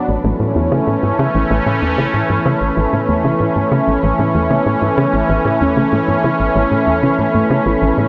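A sweeping, resonant pad leads this ambient, sequencer-driven space music, holding sustained chords up front with a bright, evolving sawtooth tone, slow attack and long release, widened by chorus and a shimmer reverb. Beneath it, a tight sequencer bass drives a punchy riff from 0.1 seconds, its square and sawtooth body edged with ring modulation and a filter sweep, echoed by delay. A very quiet, warbly pluck traces arpeggios in a dusty, lo-fi, detuned voice that stays mellow. Far in the background, a breathy, wind-like tuned noise texture drifts on its own reverb and shimmer. Set at 95 BPM in a straight 4/4 in A major, this expansive, luminous passage, cut from a longer piece, sits in a wet plate reverb that lends the whole space a long, glowing tail.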